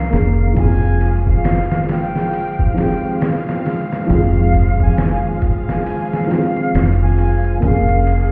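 A deep, round dub bass sits up front in this melancholic, hypnotic trip hop excerpt at 68 BPM in F minor, with a swung 16th feel, alongside a gritty, pitched-down sampler drum kit with thumpy kick and ride, a felt-muted upright piano carrying tremolo, tape echo and audible action noise, dark sul tasto chamber strings, a very quiet, distant tube shaker and triangle, and an airy, warm jazz flute melody with chiff and tape echo, all heard muffled as if through a wall in a stone room while the harmony moves from Bbm7/F to Fmadd9.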